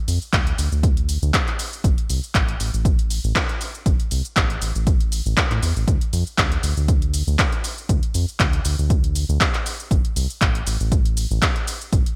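A punchy analog drum machine opens this short cut from a longer deep house track, its handclaps, hi-hat and shaker sitting up front with gated reverb and a light swing, while a round, dark bass built from sawtooth, sine and triangle tones enters alongside it, pumping against the sidechain. An electronic kick drum with a tape-warm thump joins at 0.3 s, and the groove holds to about 12 seconds in a single hypnotic section. Bright, 1980s-style digital ambience surrounds the parts.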